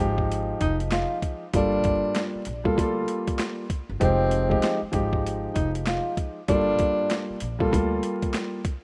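Swung sixteenths at 97 BPM drive this dark, reflective boom-bap hip-hop excerpt, where a gritty, pitched-down sampler kit with a thumpy kick, high-tuned snare, hi-hat and handclaps sits up front beside a mellow grand piano, filtered and tape-worn with audible action noise, alternating Fm9 and Gm9 chords over a woody pizzicato upright bass, while a breathy, whispered tenor saxophone enters at 0.6 seconds with vibrato, scooped notes and analog delay, all wrapped in light reverb and vinyl crackle in a rough home-demo mix.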